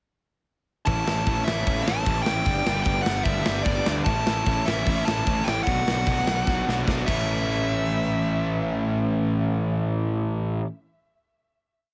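A big rock drum kit drives a two-step groove at 150 BPM in 4/4, with a punchy kick, bright cymbals and a fill from 6.5 s before the kit drops out at 7.2 s. Growly fuzz bass drives eighth notes while two electric guitars, one distorted and one compressed in the background, push eighth-note barre chords through A, G and B minor in A mixolydian. A dark, smooth overdriven lead with delay spins a motif-based melody above this upbeat, rowdy punk rock piece, which has light reverb and a heavily compressed radio sound and ends on a final hit from 7.3 s.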